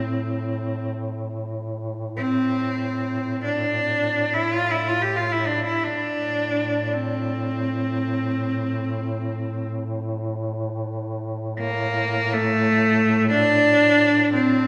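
Mournful and longing, this Caucasian folk lament in free time and A phrygian pairs a clear, bowed cello singing the melody up front with vibrato from A3 to G4 over a mellow duduk holding a softly attacked, scooped drone on A2, both bathed in the lingering reverb of a church as the music slows from 12.3 seconds to its cut-off at 14.7 seconds.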